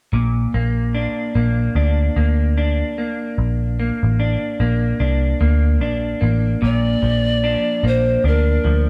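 This hazy, nostalgic bedroom-pop excerpt opens with a bright, twangy electric guitar through a small old amp, slightly broken-up and treated with vibrato, over a dark, round, foam-muted picked bass that sits punchy and up front, both moving with a lazy sixteenth-note swing. At 6.6 seconds a breathy, reedy bamboo pan flute enters with the melody, its soft chiff and vibrato adding a tender glow until the fragment breaks off at 8.9 seconds. The trio sounds like a band playing together in one room, touched by light reverb.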